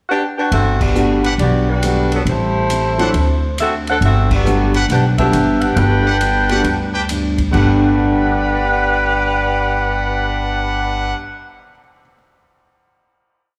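Brassy and energetic, this short, complete big band swing piece moves at 136 BPM in G major with a swung feel, heard as a live club performance through the venue's PA with light reverb and a small-room ambience. A mellow saxophone section carries the melody up front from 0.1 seconds, playing hook-like motif phrases in tight four-part block voicing with a light vibrato and a somewhat distant, roomy tone. Beneath it, a woody, growly upright bass plays a thumpy two-feel line, while a swinging drum kit with a punchy kick, medium-tuned snare and stick-played ride pattern sits back in the mix, adding hi-hat, crash and a cymbal swell. A clear baby grand piano, entering at 0.9 seconds, comps in syncopated rootless voicings with long sustain and audible action noise, and a full-bodied jumbo acoustic guitar strums jazz chord shapes in four with a slapback echo. The bright trumpet section arrives at 1.2 seconds with syncopated drop-2 stabs, also touched by slapback, as the band hits accents over a Gmaj7, Am7, D7 progression before settling onto a final chord that rings from 7.5 seconds to the close.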